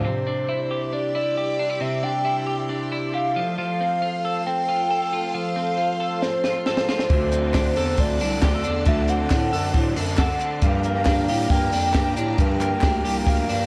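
Youthful and bright, this jangly indie pop excerpt moves at 136 BPM in a straight 4/4, its chords passing from Cadd9 to F, then D7 and Gm7. A hollow, woody synth lead with a clarinet-like tone carries the melody throughout, softened by chorus, vibrato and plate reverb, while a clean, compressed twelve-string electric guitar picks chiming arpeggios with spring reverb. Underneath, a lush vintage string machine holds sustained chords with a soft attack, long release and ensemble chorus. A compact cocktail drum kit arrives with a fill at 6.2 seconds, its punchy kick and high-tuned snare sitting up front with a rolled-off top. From 7.1 seconds a dark, close-miked bass clarinet takes the bass line in a classical style, a crunchy overdriven guitar, heard only for a brief instant at the very start, returns in the background, and crisp group handclaps add a human touch from 7.5 seconds. The whole piece sits in a moderate club reverb and carries the worn, warbling pitch drift of old cassette tape.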